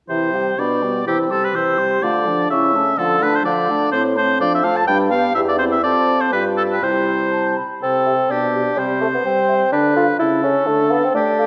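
A clear oboe sits up front on the second line, its classical-style phrasing coloured by light vibrato, while an airy, hollow silver flute carries the melody from further back with vibrato and a crisp attack. This spirited, graceful classical-period movement for wind quintet runs at 125 BPM in 2/4 in C major, taken with rubato. A mellow clarinet and a distant, roomy French horn fill in the accompaniment over a warm bassoon bass line. Moderate concert hall reverb gives this passage, cut from a longer piece, a spacious feel as the harmony moves from C through Dm and G7 before the opening material returns at 7.8 seconds.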